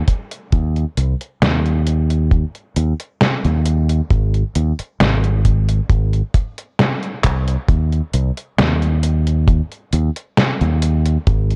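Dreamy and faded, this slow 67 BPM vaporwave fragment, cut from a longer piece, pairs a dry, tight acoustic kick drum with a detuned 8-bit digital drum machine whose fat, overdriven snare, handclaps and hi-hat carry gated reverb and a small-room grit, while a punchy fingered electric bass, direct and amped, moves between Ab1 and Eb2 up front, all with a cassette-tape tint and little reverb overall, and a brief drum fill arrives at 7.2 seconds.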